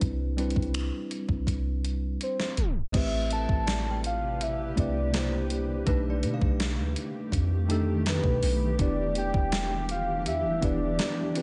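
This longing, moody contemporary R&B excerpt in A minor sits at 82 BPM in a straight 4/4, opening on a worn, slightly out-of-tune tine electric piano over a deep, round 808-style bass and a clean 12-bit drum machine. The drums are sampler-style and tape-warmed, with a thumpy kick, a medium-tuned snare, hi-hat, finger snaps and crash cymbal, all set up front after being re-recorded in a large room. A drum fill and a tape stop close the brief opening section. A soft octave-layered synth lead enters at 2.2 seconds, full and warbling with a vintage, dark edge from its sub octave, chorus and delay. A faint FM chime rings inharmonically in the background from 3.7 seconds, and at 4.1 seconds a blurred, evolving granular pad slowly fades in with its own reverb and sidechain pumping beneath chords moving from Am9 through C9 and B7alt to Em7. A lush hall reverb soaks the dreamy mix, capping its top end in a hazy softness.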